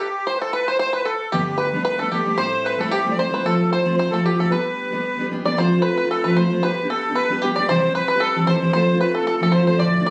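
A brisk Celtic reel at 227 BPM in 4/4, with a slight swing on the eighth notes, sets a bright, rollicking folk mood in this short cut from a longer piece. A reedy, sweet accordion carries the melody up front, its light tremolo tuning and plate reverb giving it an airy shimmer. Beneath it, a bluegrass banjo played with fingerpicks adds a twangy, percussive second line in the same register, sitting further back in the mix. At 1.3 seconds a full-bodied fingerpicked dreadnought steel-string guitar joins up front with accompaniment, finger squeaks audible as the harmony moves through Gadd9, Am7, F and G before shifting into the second section at 5.6 seconds over F, G and C. The sound is that of a phone capturing the players in a room, with moderate studio reverb and compression that keep the ensemble close and lively.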